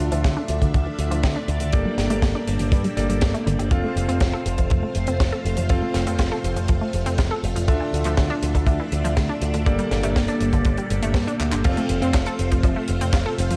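A dry, tight acoustic kick drum sits up front in this romantic, sunny italo disco excerpt, driving a straight 4/4 at 121 BPM in F major. Beside it, a punchy picked electric bass with an envelope filter plays direct and amped in the low register, while a tight funk kit adds a high-tuned snare, handclaps, hi-hat and bright crash cymbals in a small room. A lush, vintage string machine holds soft-attack sawtooth chords with a sub octave, phaser and ensemble chorus, and an electric grand piano with a clangy low end and long sustain adds filtered stabs with delay. Deeper in the mix, a detuned, warbling unison pluck runs bright arpeggios with delay under a filter sweep that lasts until 11.6 seconds. The chords move through Dmadd9, Gmadd9 and F, a drum fill lands at 11.4 seconds, and the dark production wears light reverb and studio ambience.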